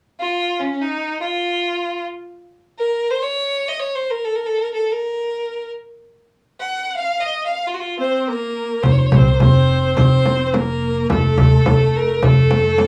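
Arabic maqam ensemble music in free time and F maqam hijaz, melancholic and hypnotic: a bright, intense bowed violin with vibrato carries the melody up front from 0.2 s, joined at 8.0 s by a warm, boxy viola second line, both with a cassette-tape tint, before a saturated clay-shell darbuka played with hard hands and a deep frame drum arrive at 8.8 s, with a woody, thumpy pizzicato upright bass just after, heard in the moderate ambience of a small home-recorded room.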